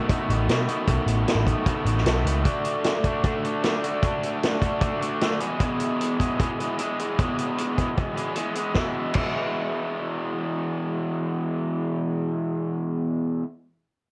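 A bright, overdriven garage guitar riff opens this wistful, jangly indie rock excerpt at 152 BPM in E major, its double-tracked picking sitting up front over chords moving from B7 to D to E. A vintage acoustic drum kit with a punchy kick, medium-tuned snare and dark, rolled-off cymbals plays until 9.3 seconds, while a round, amped overdriven bass appears only briefly, stopping at 2.4 seconds. The whole fragment carries light reverb and the worn, warbling pitch drift of old cassette tape, with the guitar continuing alone to the end at 13.4 seconds.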